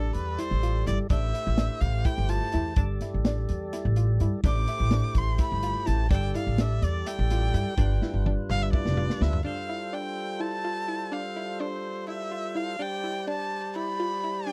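Straight 7/8 drives this bright, intricate progressive band excerpt, where a clear, nasal erhu with light vibrato and portamento carries the melody over a fat, lightly overdriven percussive tonewheel organ through a slow rotary speaker, a round sawtooth analog pluck with chorus and phaser playing arpeggios in the background, a woody pizzicato upright bass up front and a punchy vintage drum kit that plays a fill from 8.0 seconds before bass and drums stop at 9.4 seconds, leaving erhu, organ and pluck in a dry, close 1970s-style studio sound.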